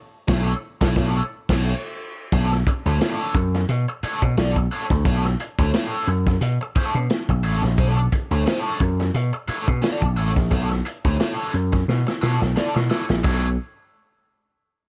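A vintage slap bass sits up front in this driving, hypnotic funk excerpt, its amped, punchy electric tone anchoring the groove on a Bm9 chord with a light swing on the sixteenths. A crunchy breakbeat kit recorded in a small room pushes alongside it, pairing a punchy kick and medium-tuned snare with dark cymbals, hi-hat and crash, all saturated and gritty with a rolled-off top. A biting overdriven guitar supplies accompaniment from above, picked and colored by wah and plate reverb. The band opens with a shared accent over the first 2.3 seconds, then settles into a steady, trance-like pulse. A drum fill from 11.9 to 13.2 seconds marks the turn before the fragment cuts off, leaving a warm, lightly reverberant sound with a soft upper end.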